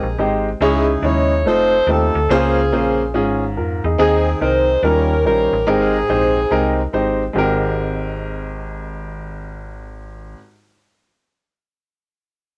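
Uptempo gospel at 142 BPM in 4/4, swung on the eighths and set in Ab major, this short cut from a longer piece feels hopeful and soulful. A mellow, jazz-style saxophone section carries the melody up front from the start, then drops out at 6.9 seconds. A baby grand piano, natural and close, supplies the accompaniment throughout with a cassette-tape coloring and plate reverb, alongside a metallic, digital FM bass whose notes strike quickly and decay. The harmony moves from Abmaj9 through Dbmadd9, F7 and Eb9 before returning to Abmaj9, and a new section begins at 7.4 seconds with only piano and bass. The whole take has the intimate feel of a home cassette recording in a small booth with a brief, moderate ambience.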